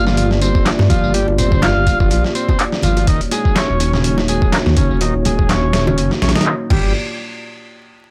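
A gritty, energetic breakbeat excerpt at 124 BPM with swung 16ths opens on a dark, chorused analog pad pumping under a buzzy vintage combo organ riff with tube saturation and analog delay, and a thick, menacing detuned saw bass, the organ and bass both under filter sweeps, before an up-front, overdriven, thumpy sampler-style drum kit, also filter-swept, arrives at 0.1 s alongside background electronic tambourine and handclaps, with very quiet hand-struck bongos and congas joining at 0.4 s, all moving between Gm7 and Ebm7 in a dry, lightly reverberant hardware sound flecked with vinyl crackle until the parts drop out around 6.9 s.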